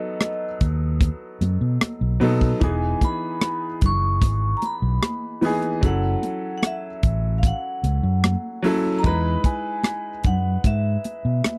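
A tight, dry funk drum kit sits up front with hi-hat, tight kick and rim click, joined at 0.6 seconds by a dark, round, amped fingered electric bass in this smooth, lush 1970s-style soul fragment. Above them, a metallic, ringing vibraphone carries the melody with a slow motor vibrato and a boxy small-room tone, while a clear, intimate baby grand piano, its action noise audible, supplies the accompaniment over B7, Emaj7 and F#m7 chords. High-tuned congas played with soft hands ring in the background of a close, dry studio sound.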